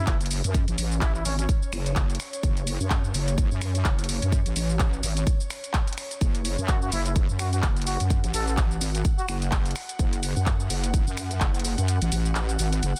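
A heavy, wobbling square-and-sine bass sits up front through this 13-second bass house excerpt in F# minor, its detuned unison voices thickened by chorus and tube saturation and pumping against the kick at 127 BPM with a swung sixteenth feel. A punchy, layered electronic kick drives the groove until it drops out at 11.9 seconds, while a house kit of finger snaps, handclaps, shaker and bright hi-hats adds bounce, with soft clipping on the snare and studio reverb on both drum parts. A plunger-muted trumpet plays brief jazz-style phrases between C#4 and A4, breathy and whispered with scooped notes and vibrato, set back in the room and roughened by vintage 12-bit sampler grit and a digital delay. Behind it all, an ethereal, airy pad holds high notes from C#5 to F#5 in the background, its slow attack, tremolo and ensemble chorus blending into built-in reverb while it pumps with the sidechain. 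A barely audible electronic impact opens the excerpt and a faint swell closes it, giving the dense, heavily limited mix a swaggering, bouncy character over a single F# minor chord.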